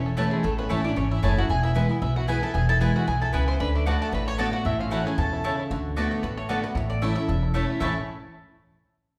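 A full bluegrass string band is already in motion at the start: a fingerpicked banjo with a twangy, percussive bite and a picked, double-strung mandolin share the melody, while a clear, boxy fiddle with light vibrato plays a second line from the background. Underneath, a full-bodied dreadnought acoustic guitar picks the accompaniment, and a woody, growly upright bass sits up front with a dark, thumpy pizzicato. A second, brighter mandolin adds stabs from 0.2 seconds. The fiddle carries a touch of tape echo and stops at 5.6 seconds, leaving the others to drive on. At a brisk 228 BPM in 4/4 with a light swing, the harmony moves through A, E and D6 in A major, and a large, wet studio reverb gives the sense of the band playing live in one room. The mood is rustic and virtuosic, and the clip is cut from a longer piece.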